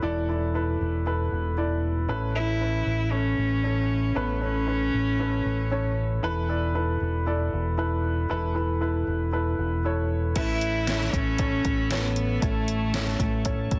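A straight 4/4 pulse at 116 BPM carries this uplifting, warm piano-driven pop excerpt in A major, where an intimate concert grand with audible action noise and a round, punchy fingered electric bass move between Esus4 and Aadd9 chords, joined at 2.4 s by a single bowed cello playing a smooth, even melody with vibrato. At 10.4 s the cello returns as a layered deep house drum kit arrives up front, its deep kick and snare overdriven, while a thick tonewheel organ holds sustained chords in the background through overdrive and a slow rotary speaker. Light reverb surrounds a dense, heavily limited modern master.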